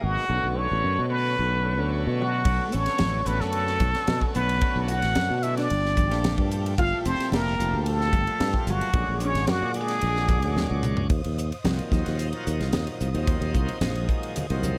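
Slick and nocturnal, this electric jazz fusion excerpt moves at 111 BPM in a straight 4/4, with a forceful plunger-muted trumpet carrying the wah-wah melody up front while a dark, clean hollow-body guitar plays a quiet second line beneath it. A shouting tonewheel organ with key click, light overdrive and slow rotary speaker fills out the harmony alongside lush bowed strings and a growly, punchy fretless bass, moving through Bm9, Gm9 and A#7alt. A crisp drum kit with a high-tuned snare and ringing low congas join at 2.5 seconds, and a drum fill at 10.6 seconds leads into Eb dorian on Ebm69 at 11.1 seconds, where the trumpet and guitar have dropped out and the rest carry on under light reverb.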